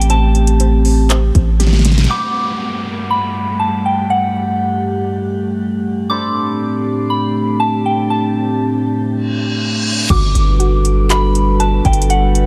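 Atmospheric cloud-rap in a half-time feel, this dreamy, blissful passage drifts on a dark analog pad that holds sustained chords throughout, its moody, square-and-sawtooth tone pumping gently against the beat under a chorus sheen. Above it, a soft FM synth bell carries the melody with pure, gentle tones coloured by chorus, phaser and digital delay, while a bright, shimmering cimbalom rings quietly in the background until 10.1 seconds. The smooth R&B drum kit, with its soft kick, fat snare and metallic, overdriven hats, plays alongside a deep, sine-like 808-style bass and a round, detuned pluck tracing dark arpeggios. These three drop out after the opening, a drum fill at 1.6 seconds leading into a stretch carried by pad, bell and cimbalom over Gmaj7 and Am11 harmony. A reverse cymbal builds toward an impact at 10.1 seconds, where the drums, bass and pluck return beneath a bed of digital ambience.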